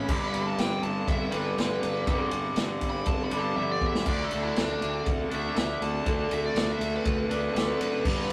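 A rough rehearsal-room sound with a moderate studio reverb gives this short cut from a longer piece a gritty, swaggering edge, set in blues rock power trio and southern rock style at 120 BPM in a straight 4/4. Up front, a raw garage guitar carries the riff from the start, double-tracked, picked and overdriven with a brilliant bite in the lower register. Over it, a biting lead guitar solos throughout in a higher range, picked and overdriven, sitting a little further back in the mix. A fuzz fingered electric bass growls beneath with a punchy, direct-and-amped tone, while a vintage acoustic drum kit with a punchy kick, a medium-tuned snare and a rolled-off top drives the groove on crash, ride and toms. The drums break into a fill at 3.6 seconds, and the harmony moves from G to D5 at 4.1 seconds.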